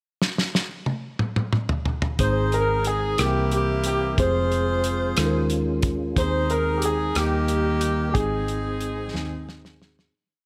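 A drum fill on a warm, fat-snared soul kit opens this slow, jubilant 6/8 gospel piece in Ab major at 60 BPM, and at 2.2 seconds an edgy, punchy saxophone section carries the motif-based melody up front beside a clear grand piano with slapback echo in the background, over a mellow tine electric piano's chords, a very quiet tonewheel organ with key click and fast rotary speaker, and a dark, round hollow-body bass, before another fill and a fade-out close it at 10.1 seconds.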